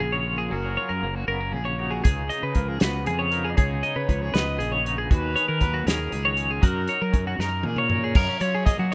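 Math rock and midwest emo in a straight 6/8 at 79 BPM, this short, playful cut from a longer piece sits in bright F# major and moves through jazzy colors, from F#maj9 to C#9, B69/D# and F#6 before returning home. A distant, roomy trumpet carries the melody with a vibrato-laced, punchy pop tone. Up front, a clean, compressed twelve-string electric guitar picks arpeggios through an analog delay, while a second twangy electric guitar adds tremolo-shaded accompaniment from the background. A round, fuzzed-out fingered bass, overdriven and up front, anchors the low end. The loose indie drum kit enters at 2.0 seconds with a fat snare, tight kick and dark cymbals in a small room, closing the phrase with a fill at 7.4 seconds, all captured with the rough charm of a home demo.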